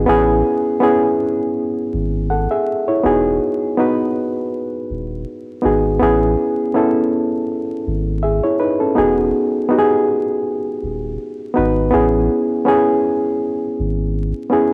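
A gently swung 4/4 groove carries this mellow, cosy lo-fi hip hop excerpt, cut from a longer piece, as a barky, reedy electric piano, lightly overdriven and filtered through cassette tape, alternates between Amaj7 and Emaj7 chords. Underneath, a deep, round sine sub bass holds sustained notes with a fast attack, while the piano sits up front with a bright tone heard through its built-in speakers. A moderate spring reverb, the character of a home recording on cassette and vinyl crackle wrap the pair in a homely, lived-in haze.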